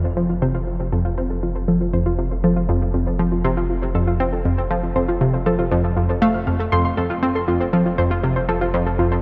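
A steady, straight 4/4 pulse carries this expansive, luminous stretch of ambient, sequencer-driven space music, where an up-front, round, detuned analog pluck riff with chorus and delay sits over a deep sine sub bass on F, while a warbling, lo-fi, wave-folded pluck spins mellow arpeggios with chorus and delay high above, the three parts sounding together for the full 9.2 seconds inside a vast, echoing cathedral reverb.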